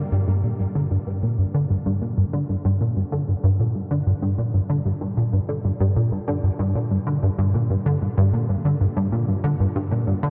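Mysterious and cosmic, this ambient cut from a longer piece in G minor at 95 BPM features a lone plucky analog bass, punchy and wave-folded with a fast attack and mellow decay, sitting up front between G2 and D3 through ensemble chorus and tape echo, all soaked in a huge reverb with an 8.7-second tail and a dreamy cassette-tape haze across its 10.3 seconds.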